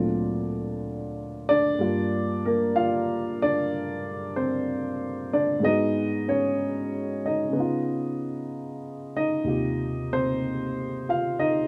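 Sophisticated and playful, this brief solo jazz excerpt swings gently at 63 BPM in 4/4 as a dark, woody upright piano with long sustain sits up front in light reverb, moving from D7alt through Gm7, Abm7 and Db9 to settle on Eb69 across its 11.7 seconds.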